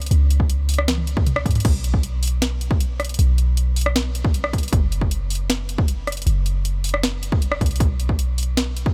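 A deep, boomy 808-style bass with sidechain pumping opens alongside a sharp-snared, bright-hatted trap kit, and at 0.4 seconds a punchy, overdriven electronic kick joins up front, with a drum fill from 0.9 to 1.6 seconds driving this dry, euphoric half-time future bass excerpt.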